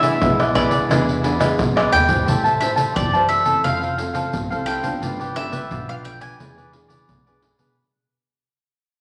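Bittersweet and yearning, this short cut from a longer samba and choro piece moves at 87 BPM in a straight 4/4, tuned slightly low at A4 = 439 Hz. A bright, picked bowl-back mandolin with double strings carries the melody, while a breathy tenor saxophone sits in the background with a mellow, jazz-style second line of vibrato and scooped notes, holding on E4 until 1.9 s. Beneath them, a crisp picked cavaquinho and a dark, classical nylon-string guitar, fingerpicked with audible finger squeak, outline the harmony as it moves from E7 through Am7, Fmaj7 and G7 before returning to E7. A woody, growly upright bass with steel strings thumps along in the background, and up-front percussion of tube shaker, pandeiro, tamborim and a deep surdo sounds compressed and saturated, with a drum fill at 1.8 s leading into the second section. The whole recording sits in a wet large-studio reverb under a layer of vinyl crackle, and it fades out from 2.3 s onward.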